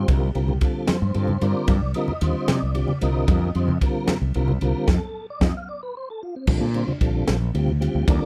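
A dry, close-sounding cut from a longer electric jazz fusion piece, funky and slick in 6/8. A mellow, round tonewheel organ with slow rotary speaker and chorus vibrato sits up front beside a punchy fretless electric bass, while a crisp, gritty fusion drum kit with bright cymbals, a high-tuned snare and a pumping small-room sound plays kick, snare, ride and crash, and soft-handed congas stay in the background. The chords move from Cm9 to F9sus4, then the band hits an accent on F5 from 4.9 s, with a drum fill at 5.8 s, before landing on Bbmaj9 at 6.5 s.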